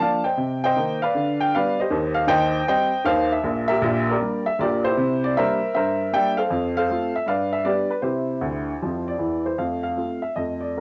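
A lone upright piano, woody and up front with long sustain, plays exuberant, swinging stride jazz in this brief cut from a longer piece, moving from Cm7 through C9 to a resolution on F, with a fill at 8.4 seconds, all softened by moderate studio reverb and the dull, top-shaved sound of a home cassette recording.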